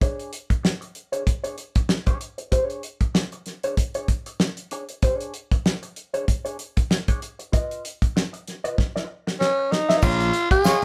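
Lightly reverberant and captured like a band playing live in one room, this playful funk excerpt at 96 BPM swings its 16ths as a mellow wah guitar and a damped 70s drum kit with a fat snare and dark cymbals groove over Db5 and rootless Db9 chords. A raspy, growling tenor saxophone enters at 9.4 seconds in the middle of a drum fill, a gritty overdriven slap bass and jingly tambourine join as the harmony turns to Bb7#9 at 10.0 seconds, and a tight vintage horn section follows at 10.6 seconds.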